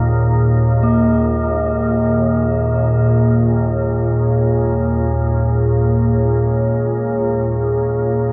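An organ-like drone sits up front in this vast, ominous dark ambient excerpt, its detuned unison tones washed in ensemble chorus and reverb and holding low and calm from the opening moment. Above it, a deep, moody pad sustains sawtooth-and-sine chords with chorus, while a bronze singing bowl, struck with a wooden striker, rings out metallic, slowly beating arpeggios through a delay. A huge, wet reverb and the warbling pitch drift of worn old cassette tape give the whole piece a murky, dulled sheen.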